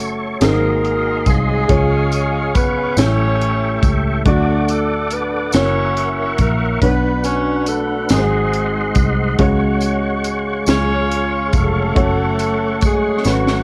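Recorded at home on cassette with a light reverb, this fervent, soulful slow gospel excerpt is in 6/8. From the start, a dark, woody upright piano with audible action noise accompanies, and a lightly overdriven tonewheel organ, complete with key click, chorus vibrato and slow rotary speaker, sustains the chords over a round, foam-muted fingered electric bass. From 0.4 s a punchy horn section with octave doubling carries the melody up front, joined by a crisp fusion kit with a high-tuned snare and a jingly tambourine in the background, and the drums close on a fill at 13.2 s.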